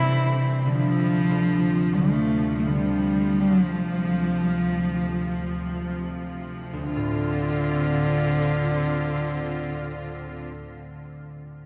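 Celtic folk in the manner of a slow air, this short excerpt cut from a longer piece moves in a free, rubato 4/4 at roughly 33-49 BPM in D minor, longing and mournful, and slowing through its first 6.8 seconds. An intimate solo cello carries the melody up front, bowed sul tasto with an airy tone, soft attack and light vibrato, while a ringing, fingerpicked concert harp accompanies beneath and a clear, intense symphonic string section holds sustained chords with a smooth top. Moving from Cadd9 to Dm7, the parts bloom into a wet cathedral reverb with a 5.9-second tail, the sound of a church or concert hall, before the strings end at about 10.5 seconds and the harp rings on to 10.9.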